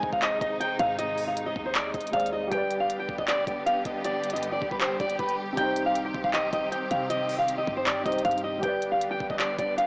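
A barely audible electronic impact marks the opening of this menacing, melancholic trap excerpt, while a fingerpicked steel-string acoustic guitar carries the melody up front, its jumbo, full-bodied tone softened by a low-pass filter and flecked with finger squeak. The track moves at 157 BPM in a half-time 4/4 feel, in C harmonic minor, with the harmony passing through Ab, G, Cm and back to G. Beneath the guitar, a dark grand piano plays a boxy, mellow accompaniment with long sustain, also filtered, while a lush symphonic string section holds bowed ensemble chords with vibrato and a soft attack. A produced trap drum kit sits up front with a knocking kick, crisp hi-hats and handclaps, and a deep, boomy 808-style sine bass with a noise layer, fast attack and decaying tail stays in the background. The whole recording has a dry, gritty cassette character with a small-speaker sound and a touch of small room reverb.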